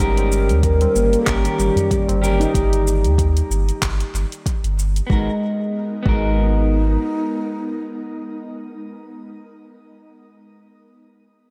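Echo-soaked and roomy, this excerpt of meditative, earthy organic downtempo in G# minor moves at 94 BPM with a swung 4/4 feel, as a breathy, hollow bass bansuri carries the melody over clean picked electric guitar, ringing handpan arpeggios, an ethereal pad in the background and a round, up-front sub bass, while a deep house kit of handclaps, hi-hat and shaker, an overdriven electronic kick and a very quiet low-tuned tabla heard only from 0.3 to 2.5 seconds fill out the rhythm until the kit falls away at 5.1 seconds as the harmony moves from D#7/G to G#m7.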